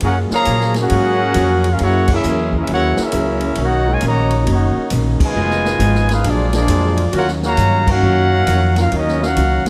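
A large, moderately reverberant studio sound frames this swinging, dramatic big band jazz excerpt in Eb minor at 135 BPM, where a mellow, vibrato-rich trumpet section carries the melody up front over a soft-attack trombone section's second line, a very quiet bright trombone section holding sustained chords, a dark, clean hollow-body guitar comping in the background, a woody pizzicato upright bass, and a swinging drum kit with punchy kick and ride, hi-hat and crash, all hitting band accents at 2.0, 5.1 and 7.8 seconds through chords moving from Gbmaj9 to Ebm9.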